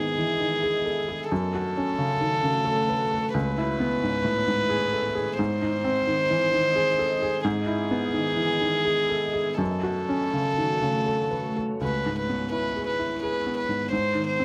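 In a rubato 3/4 at 80-90 BPM, this melancholic, longing neoclassical piece in C# minor sets a floating, airy sul tasto violin melody up front over an intimate felt-muted upright piano with short sustain and audible action noise, while a glassy FM pad with ensemble chorus and built-in reverb hangs ethereally in the background, all in a close, detailed recording with light reverb as the harmony moves through Emaj7/G#, F#m, C#m7 and G# before a new section begins at 11.8 seconds.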